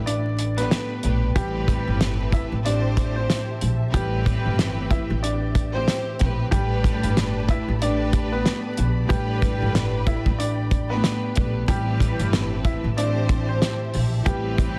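Tough and gritty, this boom-bap hip-hop cut at 93 BPM in A minor swings over a cloth-damped, thuddy drum kit with a fat snare and tight kick, a woody, thumpy pizzicato upright bass, a lush bowed string section with cassette-tape grit, and a clear, slightly detuned upright piano carrying the melody through digital delay, joined at 1.4 seconds by a dark string section holding background chords, all under a dense master with vinyl crackle.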